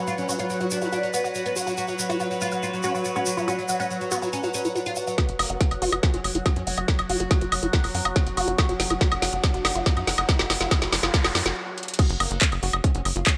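Light digital ambience frames this alien, intense psychedelic trance excerpt, cut from a longer piece. A plectrum-plucked fretless oud with deep double strings carries the melody for the first 5.1 seconds, treated with phaser, dub echo and sidechain pumping. Beneath it a woody, warbling wave-folded pluck riff runs throughout through chorus and tape echo, while a resonant drone with moving overtones holds sustained chords and a mellow, ethereal pad hovers in the background with tremolo. A grainy tube shaker and a very quiet wobbling formant-sweep bass fill out the opening. At 5.2 seconds a tight layered kick and a drum and bass kit with woody snare, metallic hats, handclaps, woodblock and crash arrive alongside a nasal, driving sequencer bass, building with drum fills, a filter sweep and a background riser and noise sweep until a brief stop gives way to the drop at 12.0 seconds.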